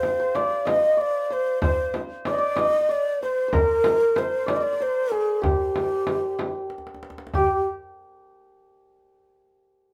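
A low, mellow ney opens this Persian modal piece in the G dastgah shur, sounding from the first moment alongside a santur and a frame drum, with a tombak joining at 0.3 seconds. The mood is longing and melancholic, moving at 63 beats per minute in a straight 6/8, tuned to A4 = 435 Hz. The end-blown reed-cane ney carries the melody up front with an airy tone, a crisp attack and vibrato. Beneath it, the hammered santur adds a quieter second line, shimmering and ringing. The frame drum, played with soft hands, and the tight tombak both have a warm, acoustic, small-room sound. A drum fill arrives at 6.7 seconds, all four parts stop at 7.6 seconds within a moderate studio reverb, and the recording is cut from a longer piece.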